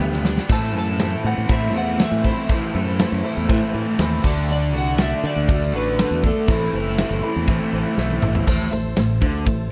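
Swaggering and brooding, this classic rock excerpt is driven by a big, punchy rock drum kit with a fat snare and a growly, bright fingered bass up front. Two crunchy overdriven guitars, one with phaser and one double-tracked, join a distorted electric guitar on the riff in the background over chords moving from G to Am, D and back to Am, while a dark, slightly broken-up slide guitar with tape echo sings the melody from 0.5 to 8.0 seconds. A detuned, jangly honky-tonk upright piano and a very quiet, shimmering twelve-string acoustic guitar fill out the accompaniment, with the twelve-string stopping at 8.5 seconds; piano and drum fills open the passage, and the dry, close 1970s-style studio sound carries a small room ambience with lossy compression artefacts.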